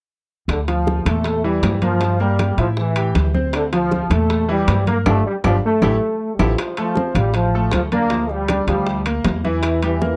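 Salsa in D minor at 158 BPM, this short cut from a longer piece feels driving and fiery, with a dry, close 1970s-style studio sound and light reverb. A mellow trombone section carries the melody up front, tight and punchy with light vibrato, while a growly, thumpy upright bass played pizzicato sits just as prominently beneath it. A bright concert grand piano joins at 0.7 seconds with a worn, brilliant tone, audible action noise and short sustain, moving through chords such as Dm, Edim, Gm7 and A5. Congas with soft hands, high-tuned bongos, ringing metal-shell timbales and woody claves fill out the percussion, mostly in the background. The band hits an accent from 5.1 seconds as a drum fill leads into a new section at 6.6 seconds, which moves through Dm7, Gm7/D and Edim.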